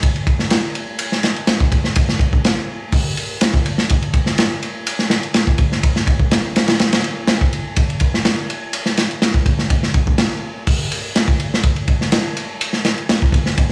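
A dry, saturated studio sound puts a crunchy acoustic drum kit up front in this energetic, gritty breakbeat excerpt at 124 BPM in straight 4/4, where a tight kick, medium-tuned snare, hi-hat and dark ride cymbal play across the full 13.7 seconds with a mid-forward, rolled-off top.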